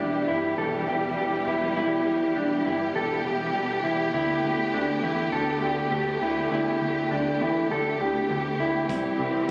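Dream pop at 101 BPM in 4/4, floating and ethereal, cut from a longer piece: a mellow, dark electric guitar plays clean fingered arpeggios bathed in lush chorus and digital delay, while a bowed string section holds expressive sustained chords with vibrato and portamento over a fat, detuned sawtooth analog bass with a filter sweep. The chords move from Em to Gadd9/D and then to C, and a distant, roomy soft-mallet drum kit with a punchy kick and rolled-off top slips in only at 8.9 s. The whole sits in a huge ambient reverb, captured on a phone in the room with club reverb and compression.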